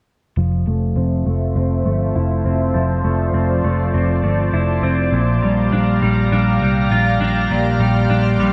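Dream pop at 101 BPM in F major, this dreamy, blissful excerpt moves from Fmaj7 to Bb6 at 5.1 s under a filter sweep. A clean, up-front electric guitar picks arpeggios with tape echo, chorus and low-pass filtering, while a dark, round, foam-muted picked bass sits just as forward. A shimmering, ethereal pad with detuned unison voices, granular texture, octave-up shimmer reverb and a slow attack enters at 0.8 s, and everything is set in a moderate spring reverb and an echo-heavy mix.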